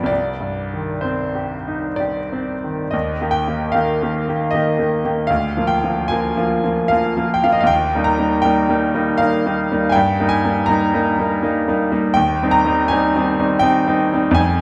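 A bright grand piano sits up front in this romantic nocturne, its tone intimate and present, with the clatter of the action audible beneath the notes and a long sustain letting each chord ring. The mood is mournful and wistful, unfolding in triple metre with a freely breathing rubato that lets phrases stretch and settle. The harmony opens on a minor chord before turning toward the major at 2.9 seconds, where a new section begins and drifts through dominant and inverted tonic colours before coming to rest on a minor chord voiced over the tonic bass. The piano ranges from C2 to Bb5, covering a deep bass register and a clear upper line. A stone room reverb adds a wet, lingering tail around the instrument, while the overall production leans dark. This is a brief passage cut from a longer piece, ending at 14.6 seconds.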